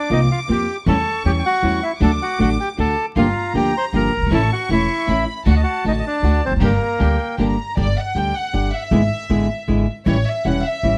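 Dramatic and passionate, this rubato tango excerpt in 3/4 at 157 BPM sets a reedy, bright bandoneon melody up front over a woody, thumpy pizzicato upright bass with gut strings, fingerpicked flamenco guitar with audible finger squeak, a soft-attack, floating sul tasto violin section as the second line, and focused, vibrato-rich string stabs in the background, until the bandoneon drops out at 7.4 s and the smooth-topped violins take the lead in G major from 7.8 s, all in light reverb with close, detailed miking and a touch of vinyl crackle.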